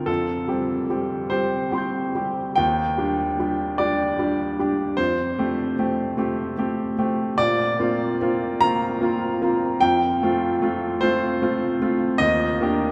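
Intimate and reflective, this short neoclassical minimalist piano piece, cut from a longer work, unfolds in 6/8 at 50 BPM counted in dotted quarters, with a rubato feel that lets time breathe. A solo grand piano carries everything from 0.0 to 12.9 seconds, ranging from Eb2 up to G6 with a clear, natural tone, short sustain and an up-front presence. The harmony circles patiently through Fadd9, Ebmaj7 and Bbadd9, returning to Fadd9 again and again before settling back on Ebmaj7 near 12.2 seconds. A wet cathedral reverb with a 5.5-second decay places the instrument in a vast, echoing space, so each chord lingers in a luminous halo around the crisp attack. The result feels contemplative, like a private thought carried into a cavernous room.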